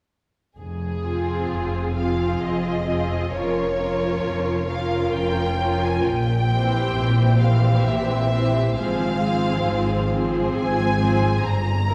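Swaying in a flexible three-beat pulse with generous rubato, this slow, romantic movement for string orchestra unfolds with a yearning, solemn mood. At 0.6 seconds a studio-toned violin section sings the melody with smooth, even vibrato, while a rich double bass section and a cello section, set slightly in the background, anchor the harmony from the depths. Violas enter at 1.0 seconds with lush, bowed accompaniment, and a second violin section joins at 1.1 seconds, adding an expressive second line with soft attacks beneath the tune. The ensemble sounds heard from further back in a concert hall, its wet reverb lending the bowed tones a glowing, spacious halo. This short excerpt is cut from a longer piece, its harmony settling on a tense diminished chord at its close.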